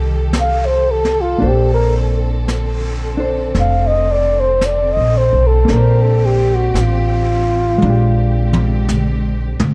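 Jazz ballad in Bb major at a slow, swung 56 BPM, romantic and tender, where a breathy flugelhorn with vibrato and a soft attack carries the up-front melody over woody, growly pizzicato upright bass, clean hollow-body electric guitar accompaniment, lush bowed symphonic strings holding sustained chords, and distant, roomy brushed drums that enter at 0.3 seconds and play a fill from 7.8 seconds, as the harmony moves from F13 through Bbmaj9 to Bb13 in a dark, warm production with light reverb.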